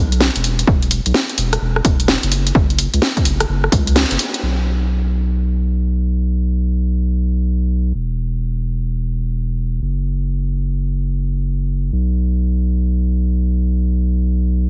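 A swung 16th-note groove at 64% drives this two-step UK garage cut at 128 BPM in 4/4, with a moody, bouncy feel. The garage kit is layered and up front, with bright hats, a rim click and a cracking snare, the snare and hats softened by a low-pass filter and the kit set in studio reverb. An analog electronic kick joins at 0.7 seconds, dry and punchy, and stops at 3.8 seconds. The saturated sub bass runs throughout, deep and thick, with a triangle-like tone, a fast attack and sustained notes between E1 and C#2. After a band accent at 4.0 seconds the kit drops out at 4.4 seconds, and the bass carries the rest of this fragment from a longer piece alone, heard through light reverb and a heavily compressed, radio-like sound.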